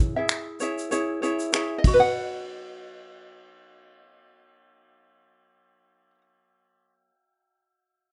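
A bright, fingerpicked ukulele opens this short acoustic pop excerpt, sitting up front with a light touch and a gentle swung lilt. At 0.3 seconds a soft brush kit joins, close and natural in a studio room, with finger snaps, a tight kick, a shaker and dark ride cymbal. The kit drops away at 2.0 seconds, and the ukulele carries on alone until 6.2 seconds. The harmony moves from C#m to B, and the mood feels heartfelt and sunny. A light reverb surrounds the sound, and the top end is mellow and rounded.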